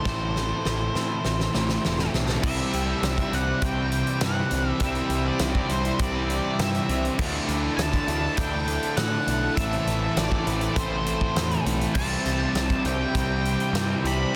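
A huge, up-front arena drum kit with a fat snare, punchy kick and bright cymbals opens with a fill and drives this dreamy, blissful shoegaze and dream pop rock excerpt at 101 BPM in C major, under a dark octave-fuzz lead melody with digital delay, growling overdriven bass, a thick chorused fuzz riff, an overdriven semi-hollow riff with reverse reverb, a double-tracked tight distorted guitar entering at 2.4 seconds, very quiet clean direct-recorded arpeggios and a lush detuned sawtooth pad, all moving through Am, Cadd9 and Dsus2 in a small room with a dense, heavily limited master.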